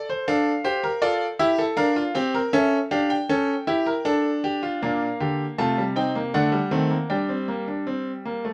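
A brilliant, up-front solo grand piano opens this short, driving yet contemplative passage from a baroque-style four-part classical fugue in 3/4, its natural tone spanning Bb2 to A5 in light reverb as the harmony moves into a new section at 4.8 seconds.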